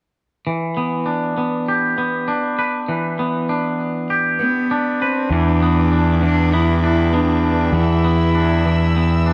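Dark, warm production with light reverb and a small-room ambience frames this brooding, cinematic rock piece in E minor at 99 BPM, in a straight 4/4 and tuned to A4 = 442 Hz. A twangy electric guitar opens at 0.5 seconds with clean, fingered, compressed arpeggios over an Em7 chord, sitting up front with spring reverb and digital delay. At 4.4 seconds a single bowed cello joins with a pure, floating melody, played sul tasto with a soft attack and set distant under its own digital delay. From 5.3 seconds a fuzz-laden picked electric bass plays on E2, bright, direct and overdriven, placed forward in the mix. At the same moment a muted studio string section sustains veiled, con sordino chords with vibrato in the background, and the piece is cut from a longer work.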